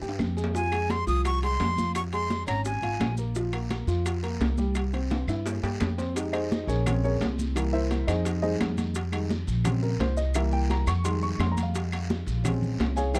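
Fiery and passionate, this salsa excerpt in F minor drives along at 171 BPM in a dry, close 1970s-style studio sound, where a breathy, bright jazz flute with vibrato and a chiffy, reedy attack sings up front from 0.6 to 3.1 seconds, drum fills open the piece and lead into a solo from a dark, worn grand piano with audible action noise at 6.2 seconds, and a woody pizzicato upright bass sits up front over a background of damped, high-tuned congas, tight vintage bongos, ringing saturated metal-shell timbales, woody claves, grainy maracas and a raspy, distant guiro.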